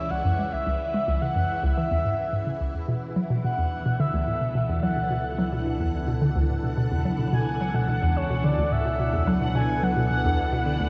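Drenched in a huge, dark reverb, this excerpt of ambient, sequencer-driven space music feels cosmic and hypnotic in a straight 4/4. A hollow, bouncy square-wave pluck riff sits up front with chorus and tape echo as its filter sweeps, while a breathy, flute-like lead carries the melody over swirling phased string-machine chords and a fat analog bass that fades in from the background. From 3.1 s a bubbling texture of random, resonant filter steps joins far behind, as the harmony moves from C#m to Bm7/C#.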